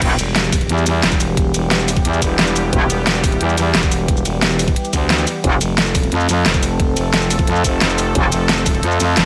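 Dark technical drum and bass at 177 BPM in E phrygian, this mechanical drop excerpt pairs an overdriven electronic kit with a huge up-front snare, crash, hi-hat, ride and shaker and a knocking layered kick, while a thick growling FM bass enters at 0.2 seconds alongside short saturated stabs of metallic wobble bass and a bright, detuned sawtooth pad pumping under sidechain as the chords move from Em to F at 5.4 seconds, all set in light digital ambience.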